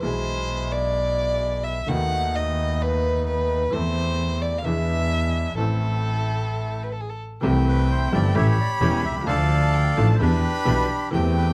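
A rich, focused bowed violin leads this elegant, nostalgic tango fragment, carrying a solo line with vibrato through the first 7.4 seconds before a brief stop at 7.0 seconds. Beneath it, a dark, smooth bowed double bass sits up front and steady, while a clear, woody upright piano supplies open accompaniment and a reedy bandoneon adds bright stabs. The tempo is 130 BPM in 4/4, played with a rubato feel, moving from A harmonic minor to C major at 7.4 seconds. At 7.7 seconds a second bandoneon enters with an airy melody set back in the mix as the violin shifts to a second line. The sound is close and detailed, with light reverb, and the passage is cut from a longer piece.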